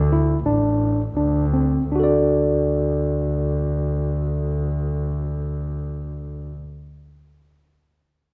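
A dark, warm production set in a lush recital-hall reverb frames this restless, shimmering contemporary instrumental excerpt, which slows down through its opening 1.9 seconds. Up front, a single bowed double bass plays sul tasto with an airy, soft-attacked tone and light vibrato, sounding rich, close and intimate in its low register. Beside it, from 0.1 seconds, a clean, bright tine electric piano with a barky bite through a combo amp spins arpeggios until 6.6 seconds.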